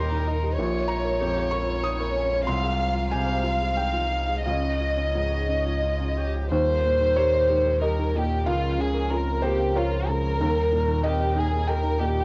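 Recorded at home onto cassette, this reflective, melancholic neoclassical excerpt sits in a small room with light reverb and a dulled top end, moving in a rubato 3/4 at roughly 86-97 BPM in Bb dorian. A chamber violin section carries the melody up front, bowed sul tasto with soft attacks and vibrato, over a felt-muted upright piano whose mellow, intimate accompaniment lets its action noise through, while a dark, woody solo cello sings a second line in the background and a very quiet string section holds sustained chords. A deep, full sub bass with octave anchors the low end, and a round, warbling vintage pluck with chorus and tape echo spins arpeggios behind, as the harmony moves from Eb through Bbm7, Fm/C and Dbadd9.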